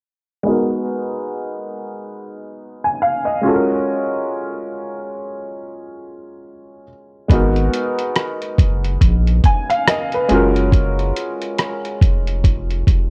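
Melancholic and hazy, this lo-fi hip hop excerpt moves at a relaxed 70 BPM in G# dorian with a gentle 16th-note swing. A worn, woody, slightly detuned upright piano opens alone with cassette-tape colour and a filter sweep, alternating G#m9 and F#maj9 chords. At 7.3 seconds a deep, thick sine sub bass with saturation and a muffled, compressed sampler-style drum kit of thumpy kick, hi-hat and rim click join up front in a dry, close mix.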